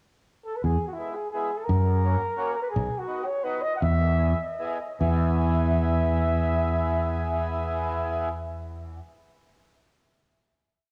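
A mellow, roomy flugelhorn leads this short, bouncy and festive alpine folk dance in 3/4 and E major, singing a motif-based melody with light vibrato over a punchy fretless electric bass playing root and fifth on the main beats and a reedy accordion adding off-beat triad chords, all at 141-173 BPM with a slowing down from 2.7 to 5.0 seconds before a final chord, heard through the intimacy of a home cassette recording with light reverb.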